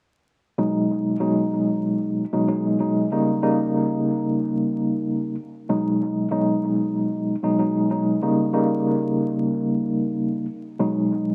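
A worn, slightly out-of-tune tine electric piano plays alone from 0.6 to 11.3 seconds, sitting up front through a combo amp with light overdrive, medium tremolo, cassette tape colour, high- and low-pass filtering and dub echo. It alternates between G#m7 and D#7 in G# minor, in the low-to-middle register. This moody, gritty hip hop fragment moves at 94 BPM with a gentle 16th-note swing, wrapped in light reverb, an echo-heavy mix and vinyl crackle.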